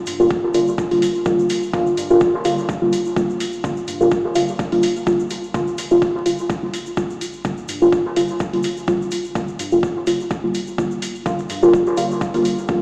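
Dub techno at 126 BPM in G minor, cavernous and hazy, built on a single Gm7 chord where a deep, nasal chord stab sits up front with chorus, phaser, dub echo and sidechain pumping over a round sine sub bass that also pumps, an overdriven deep kick, metallic analog hi-hats and a grainy egg shaker in the background, all bathed in a stone-room echo chamber with vinyl crackle and a small-speaker tone in this 12.8-second cut from a longer piece.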